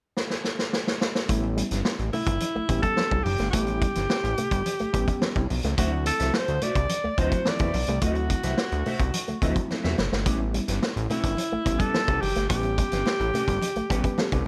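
A straight 4/4 funk groove at 107 BPM in A mixolydian opens at 0.2 seconds with a drum fill on a vintage kit: a tight kick, a medium-tuned snare and hi-hat, saturated and gritty with a rolled-off top, sitting up front in a studio room. At 1.3 seconds the band enters over an A9 chord, with a fat, detuned sawtooth analog bass with a plucky filter, a twangy, bright guitar riff through an envelope filter, reedy, worn electric piano stabs that are slightly out of tune, lightly overdriven and shimmering with fast tremolo, and very quiet congas with thin, damped skins. Moments later a warm alto saxophone takes the up-front solo melody in a jazz style, with subtone, vibrato and scooped notes. A mellow, dark, clean electric guitar with subtle chorus slips into the background at 5.8 seconds as the harmony moves to D9, then returns to A9 after another drum fill. The strutting, gritty feel is framed by light reverb, and the piece is cut from a longer performance, closing on a short electric piano fill.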